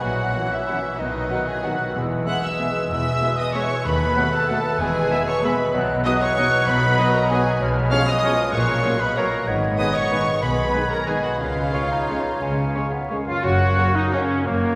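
An elegant, sweeping orchestral ballroom waltz opens at once in a rubato 3/4 at 167-206 BPM, the lush, vibrato-rich violin section carrying the melody over soft-attacked cellos and smooth, even double basses. An airy flute group adds a supporting line, while a second violin line, mellow clarinet, roomy cor anglais and a distant bassoon weave further supporting lines in the background, and a very quiet, ringing concert harp plays arpeggios. Within the first second a dark, hushed French horn section and a clear trombone section add sustained chords, a clear trumpet punctuates with stabs, and a distant, very quiet viola section fills in the accompaniment as the harmony settles into F# major from 5.7 s. The whole passage blooms in a cathedral-like hall reverb with a faint vinyl crackle, and this cut from a longer piece closes on an F# chord at 13.4 s.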